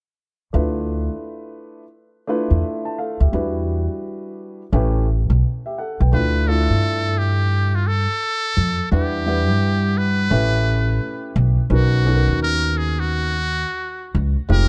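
A dark, warm studio sound with reverb frames this cool, nocturnal jazz-hop fragment, swung on the sixteenths, as a mellow upright piano and a woody pizzicato upright bass, placed up front, play together from 0.5 seconds. At 6.1 seconds a trumpet with a metal mute takes the solo melody, its brilliant, buzzy, thin tone carrying light vibrato in a jazz style. Beneath it the harmony moves through rich extended chords such as Dm69, A9 and Bmaj9.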